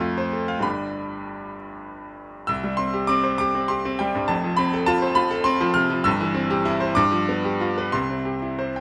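Close, detailed microphones and light reverb give this short passage, cut from a longer piece, an intimate, up-front sound in which the clear baby grand piano's action noise is plainly audible. It is a heroic, sparkling classical virtuoso piano study in C major and 6/8, played solo with free rubato at about 61-68 dotted-quarter beats per minute, ranging from F1 to F6 and tuned to A4 = 443 Hz. The harmony moves from F through G and C chords before settling on G7 at 7.0 seconds and resolving to C at 7.9 seconds.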